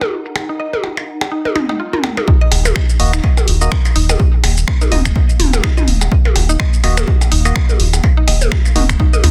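Hypnotic, clinical minimal techno cut from a longer piece opens with dry analog drum-machine snaps, hi-hat and shaker, overdriven electronic toms and percussion blips, a very quiet swarming drone and a brief warbling tape-like pad. A woody mallet-like synth pluck with chorus and tape echo joins at 0.5 seconds, and the drop at 2.3 seconds brings a punchy, up-front electronic kick, followed by a round, deep analog bass pumping under it at 2.5 seconds and a hollow, nasal organ stab trailing dub echo at 3 seconds, all in a dense, heavily limited mix with little reverb.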